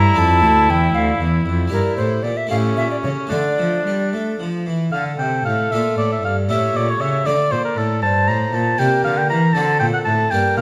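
A grave, introspective baroque-style sonata movement in D minor opens with all four players sounding together: an alto recorder carrying the melody, an oboe on a second line, a harpsichord providing accompaniment and a cello holding the bass. Cut from a longer piece, it moves in a straight 6/8 at 78 dotted-quarter beats per minute and turns to a new section at 4.9 seconds. The recorder has a wooden, pure tone with a soft attack, a touch of chiff, vibrato and lifted highs, while the clear oboe sits up front with light vibrato in a classical solo manner. The cello is rich and reedy, a single bowed player with a period gut-string tone, placed close and forward. The plucked harpsichord sounds full and brilliant across three sets of strings. The harmony moves among Dm, Gm and A7 before closing on D7, and a moderate recital-hall reverb gives the ensemble space.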